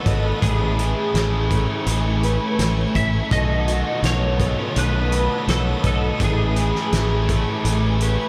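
A bright, up-front fingered electric bass anchors this blissful, hazy shoegaze and dream pop fragment, cut from a longer piece, as the chords move from Amaj7 to B7 and back. A loose, gritty indie drum kit with a fat snare and punchy kick sits beside a biting overdriven guitar riff, a raw garage guitar riff with reverse reverb, a dark lightly driven lead melody with chorus and tape echo, and lo-fi arpeggios through a small old amp. A shimmering, ethereal ambient pad with octave-up shimmer hovers in the background, and the whole mix is soaked in a long plate reverb.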